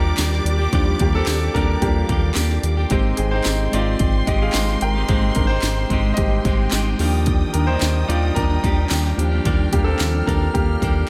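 Bittersweet yet driving, this piano-driven pop passage, cut from a longer piece, moves at 110 BPM in a straight 4/4 over Ebmaj7 and Abmaj7 chords, with a clear, polished baby grand piano carrying a solo throughout. Lush symphonic strings hold sustained bowed chords with vibrato and portamento, while a bright, scooped clean electric guitar picks a compressed riff through spring reverb. A round, dark analog bass sits up front beneath an overdriven electronic house kit of punchy kick, cracking snare, handclaps and bright hi-hat, with a jingly tambourine in the background, all set in a dreamy, reverb-soaked mix.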